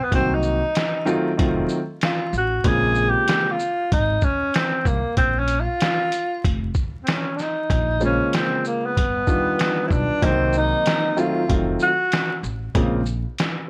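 A breathy, subtoned tenor saxophone with scooped notes and vibrato solos from the start until 7.7 seconds in this smoky, nocturnal jazz-hop excerpt at 95 BPM with a swung 16th feel, backed by an intimate concert grand piano with audible action noise that drops out and returns at 8.0 seconds, a woody, growly pizzicato upright bass, and a muffled, pitched-down sampler-style trip hop kit with a thumpy kick, snare, shaker and hi-hat, set in a dry, gritty recording with vinyl crackle over Cm7b5, F7b9 and Bbm9 changes.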